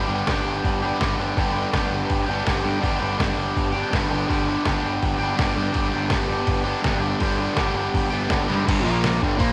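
Garage rock with a rowdy, raw edge drives along at 164 BPM in a straight 4/4, cut from a longer piece and centred on G major. A crunchy, bright overdriven guitar sits up front with its double-tracked riff ranging from G2 to G4, carrying the color of cassette tape. Beneath it, a growling picked electric bass, direct and amped with its own overdrive, holds down the low end from G1 to G2. The drums come in at 0.3 seconds as a trip hop sampler-style kit, compressed, pitched down and muffled, with a thumpy kick, a medium-tuned snare, hi-hat and crash, re-recorded in a small room and also on cassette tape. A drum fill at 8.5 seconds leads into a shift from the G chord to G5 and then Bb5 near the end, all captured as a home cassette recording with light reverb.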